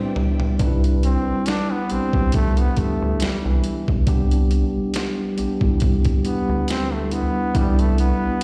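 R&B and neo-soul at a relaxed 69 BPM in C major, this smooth excerpt from a longer piece opens on a Cmaj9 with a band accent and a drum fill from a gritty, pitched-down boom bap sampler-style kit with a thumpy kick, while a bowed studio string section with portamento sits in the background until 0.6 seconds. From there a brilliant, close-miked trombone solos with vibrato over a mellow tine electric piano, both carrying slapback echo, as the kit carries on and a rubbery square-wave bass joins, sitting dark and up front. It sounds like a live gig heard through the venue's PA, in a recital hall's reverb.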